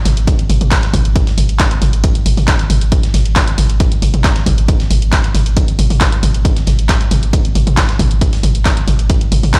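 Driving peak-time techno at 136 BPM in a straight 4/4, this short excerpt cut from a longer piece feels intense and dark from its first moment. A deep, thick sub bass sits around G#1, saturated and triangle-shaped with a fast attack and sustained tone, pumping under sidechain compression and shaded by a low-pass filter. An electronic kick drum enters at 0.3 s, dry, analog and punchy, placed up front as the loudest element. Beside it, a punchy analog drum machine supplies dry handclaps, hi-hat and toms, while a very quiet, gritty sampler-style kit adds compressed hi-hat and a fat snare beneath. The sound carries little reverb of its own yet seems played on a big sound system in a bare room, with a large studio reverb around it.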